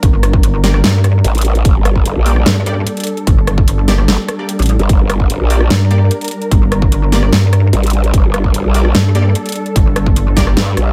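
A heavy, detuned pluck bass pulses with chorus and overdrive from the start of this menacing, aggressive half-time dubstep passage, joined up front at 1.2 seconds by a growling, formant-filtered wobble bass. A punchy electronic kick and a tape-warm kit of huge snare, rim click and metallic hi-hats drive the beat, while distant, lush bowed strings hold sustained chords that pump under sidechain and a low-pass filter, and a bright, detuned sawtooth stab like an orchestra hit sits in the background with dub echo from 0.6 seconds. A very quiet electronic swell appears at 10.8 seconds as the piece cuts off.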